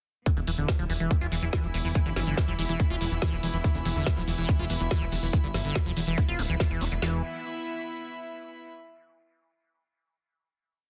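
Psychedelic and intense, this short, complete psychedelic trance piece drives at 142 BPM in a straight 4/4, with a groove running from 0.3 seconds until a final chord rings out from 7.0 seconds. A tight kick holds a four-on-the-floor pulse up front with a woody snare, while a second layered electronic kit adds metallic closed and open hats and a programmed backbeat, both sounding re-recorded in a small room. Underneath, a fat, detuned sawtooth bass rolls in sixteenth notes, joined by a squelchy, resonant acid line with slides and filter sweeps, coloured by chorus, dub echo and sidechain pumping. A bright, pulsing gated texture drones in the background on sustained chords, and a rich chamber string section with light vibrato bows slowly shifting chords, pumping with the kick and carrying on alone through the final chord to 8.7 seconds. A grainy, hand-played cabasa slips in at 3.7 seconds with compressed sixteenths, all set in light digital ambience within a dense, heavily limited modern master.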